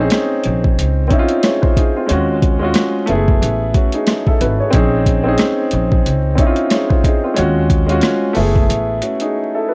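A warm, intimate upright piano with audible action noise and a vintage cassette-tape color opens this dark, tough boom-bap hip-hop passage in Bb minor at 91 BPM alongside a woody pizzicato upright bass, as an up-front, compressed, overdriven sampler-style kit with a thumpy kick, medium-tuned snare, rim click and hi-hat swings through minor-eleventh chords on Bbm11, Ebm11 and Gbm11 in a dry, gritty small-room mix with vinyl crackle, before the drums drop out at 9.3 seconds and the piano rings on until 9.7 seconds.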